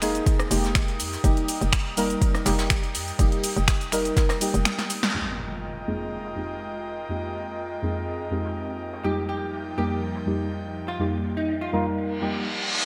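Bright, 1980s-style digital production steeped in lush hall reverb frames this moody deep house excerpt in F minor at 123 BPM, where a deep, detuned chord stab with chorus and delay pumps against an airy, breathy pad while a hollow, knocking FM bass, a punchy analog drum machine and an up-front electronic kick drive the opening until a drum fill leads into an impact at 5.1 seconds; the stab then carries a filter sweep, soft brushes on snare and ride murmur in the background throughout, a clean, picked hollow-body jazz guitar with a dark tone adds a brief melody from 9.0 seconds, and a reverse cymbal rises at 12.2 seconds.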